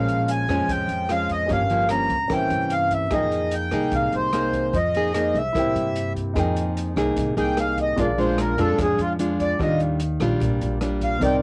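Bossa nova in F minor at 148 BPM, this short cut from a longer piece has a smooth, intimate mood, with a home-cassette character and light reverb. A reedy accordion with slow beating sits up front carrying the melody, and from 6.4 seconds it takes a solo over chords moving through Fm11, Bb7 and Ebmaj9. Beside it, a full-bodied, fingerpicked nylon-string guitar with fresh strings and a deep classical tone supplies accompaniment, joined by a polished grand piano placed in the background. An upright bass played pizzicato gives a woody low end with transformer saturation, while an acoustic jazz kit in a small room adds dark hi-hat, rim click and a boomy kick. The tuning sits slightly low at A4 = 438 Hz, lending the cassette-toned, warm recording a softly aged feel.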